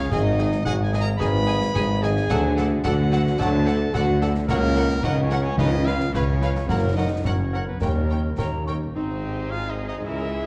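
Opening at once on a full orchestral sound, this heroic, soaring adventure-film cue at 109 BPM in F# major sets a smooth-topped violin melody over a rich second violin line, lush clear violas, expressive cellos, a distant bowed double bass section with portamento and a far-off tuba, with a ringing thumb-plucked concert harp playing arpeggios and a clear, roomy trumpet adding stabs, while a pure flute, mellow cor anglais, dark French horns and soft-attack trombones join at 0.1 s, snare drum, bright clash cymbals and bass drum sound until 8.6 s, hard-mallet timpani strike briefly at 5.6 s, and a wet recital hall gives the dark, warm production its glow before the music is cut off.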